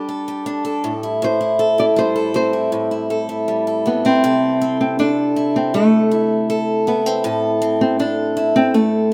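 Heartfelt and easy-going, this short instrumental pop passage, cut from a longer piece, moves at an unhurried 80 BPM in a straight 4/4 in C major, tuned slightly low with A4 at 438 Hz. A fingerpicked nylon-string guitar carries the melody from A3 to D5, its small, intimate voice sitting up front. Beneath it, a picked steel-string acoustic guitar supplies the accompaniment across A2 to A4, with a concert-hall fullness and a warm tone that also keeps it close to the listener. Both guitars play together throughout the 9.1 seconds, set in a moderate plate reverb that lends a gentle sheen. The harmony drifts from Gsus2 to Am7, then shifts at 4.2 s into a second section built on C6 before settling on Am at 7.2 s.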